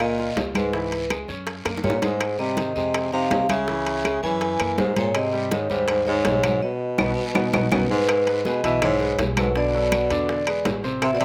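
Sophisticated and lively, this Afro-Cuban jazz passage moves at 163 BPM in straight 4/4, with a metallic, ringing vibraphone melody carrying a slow motor vibrato over a breathy, whispered baritone saxophone second line that sits intimate and up front. A clear concert grand piano with deep bass supplies background accompaniment, a thumpy, gut-strung upright bass plucks the low end, and thick-skinned congas, tight high-tuned bongos, metal-shell timbales, vintage band-limited claves and a raspy, distant guiro fill out the percussion. Slapback echo touches the vibraphone, saxophone, piano, bongos, claves, guiro and timbales, and after drum fills and a band accent from 6.6 s, the harmony settles into E major at 8.1 s.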